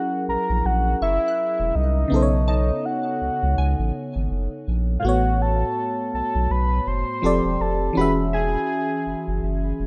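A soft, octave-layered synth lead carries the melody up front, its round, detuned tone with vibrato, chorus and delay giving this moody, sensual contemporary R&B excerpt a dark glow at 82 BPM with a swung sixteenth feel. Beneath it, a bell-like FM electric piano plays the chords, moving from F#7 through B9 and A69 to F69 and E69, while a thick, saturated sub bass enters at 0.3 seconds. From 1.0 seconds a crystalline, warbling wavetable pluck sits faint in the background, all within light reverb and a rough home-demo mix.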